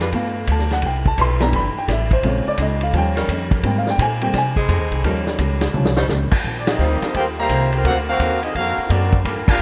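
In a light, small-room ambience with a rough home-demo feel, this energetic big band swing cut moves at 171 BPM in 4/4 with a swinging feel. An intimate baby grand piano takes the lead until 6.0 seconds, over woody pizzicato upright bass, a vintage drum kit with dark cymbals and a tight kick, a very quiet, dark hollow-body electric guitar, and sustained background chords from a saxophone section. After a drum fill at 5.7 seconds, a loose, warm trumpet section with vibrato takes the melody from 6.6 seconds, backed by a bright, soft-edged trombone section and band accents.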